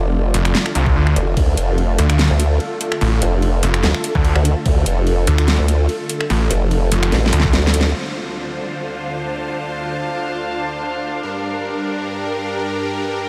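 A snarling, growling distorted saw bass drives this aggressive, menacing heavy wobble dubstep excerpt at 146 BPM in D minor with a half-time feel, alongside a saturated formant-sweep wobble bass, a knocking electronic kick and a dubstep kit with a huge snare, metallic hats and snaps, under lush, bright supersaw chords with phaser and sidechain pumping that carry on past the drop's end at 7.9 seconds, when a reedy, gut-string studio string section enters and plays through to 13.3 seconds.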